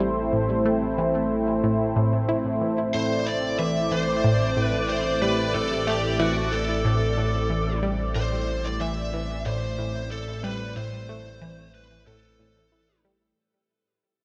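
An overdriven lead guitar enters with a picked melody at 2.9 s over an evolving, detuned pad holding A minor chords, a nasal, chorused analog pluck riff with phaser and delay, and a fat, saturated analog bass in this cosmic, hypnotic slice of sequencer-driven ambient space music at 92 BPM, all bathed in a vast cathedral reverb as the bass fades in and the piece fades out from 6.4 s.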